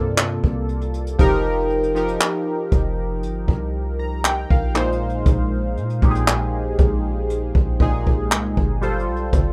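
A slow, straight 4/4 groove at 59 BPM opens this moody, longing contemporary R&B fragment in F minor, with a brushed acoustic jazz kit entering at 0.2 s to add hi-hat, handclaps and a punchy kick in a roomy, small-room sound. Underneath, a deep, boomy 808-style sine bass decays after each attack. Up front, round, detuned sawtooth analog keys with a filter sweep, chorus and phaser drift through suspended ninth chords: C9sus4, F9sus4, Bb9sus4 and G9sus4. The dry, rough home-demo mix keeps it all intimate.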